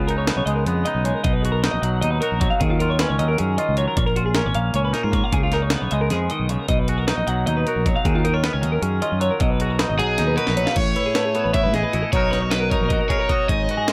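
A brisk 7/8 pulse counted in eighths at 308 BPM drives this playful, bright excerpt of math rock and midwest emo in B lydian, built on a gritty jungle sampler-style drum kit whose pitched-up, compressed sound pairs a thumpy kick and medium-tuned snare with hi-hat and crash, placed up front. A fingered electric bass, bright, punchy and direct, holds the low end while a twangy, clean electric guitar plays accompaniment up front and a twelve-string electric guitar spins arpeggios with a subtle chorus. The harmony moves through C#13, Bmaj7, D#m11 and A#m7, then repeats C#13, Bmaj7 and D#m11 before turning to B6. A drum fill at 10.5 seconds sets up a new section, where the chords shift to Amaj9 and Bmaj9. An overdriven semi-hollow guitar with a hollow-body tone enters at 10.0 seconds to carry the melody up front, all within a light reverb.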